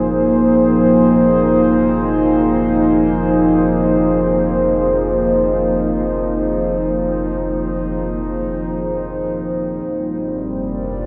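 Ambient music in free time, peaceful and serene, cut from a longer piece and drifting from F minor to Bbadd9/F at 9.9 seconds. A warbling, nostalgic tape-like pad sits up front holding dark sustained chords with a slow attack, long release, chorus and its own reverb. Beneath it a round, mellow sine sub bass fades in on a low F, all set in a huge wet space with an eight-second reverb and a cassette-tape sound.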